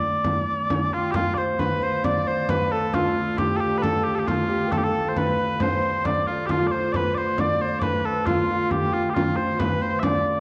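A mellow small bagpipe carries the melody from the very start, sweet and continuous with vibrato, standing up front over a rich viola da gamba drone that rings low in the background with a reedy, gut-string tone and an airy bow. This medieval dance in triple time has an ancient, driving mood, and a deep, large frame drum joins at 0.2 seconds, its hard hand strokes sounding compressed and saturated up front in the mix. At 0.9 seconds a hammered dulcimer and a tenor recorder enter together on a second line. The dulcimer shimmers and rings, while the recorder sits distant, pure and woody, with a soft attack and a gentle chiff. The whole passage is bathed in a wet recital-hall reverb and colored by worn cassette tape with a warbly pitch drift, and it is cut from a longer piece.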